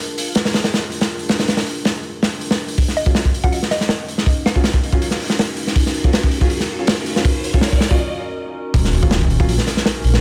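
A warbly, nostalgic tape-like pad opens this raw, dark 161 BPM drum and bass cut in Eb minor, joined at once by a crunchy, saturated breakbeat kit up front. A hollow square pluck with dub echo makes a brief appearance, while clear but boxy piano stabs under a low-pass filter and a background riser build through a short break to a drop at 8.7 seconds, where a deep, rumbling detuned saw bass arrives with an electronic impact.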